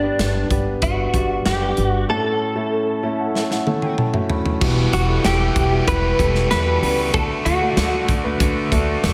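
Soaked in lush hall reverb for a dreamy sheen, this hopeful, anthemic piano-driven pop excerpt at 95 BPM sets a bright, clean, direct-recorded electric guitar melody with ensemble chorus up front over an open, long-sustaining grand piano, a woody, growly pizzicato upright bass and a modern studio drum kit with a punchy kick. Piano and drum fills lead into the change at 4.6 seconds, where an overdriven electric guitar riff with phaser joins low in the mix.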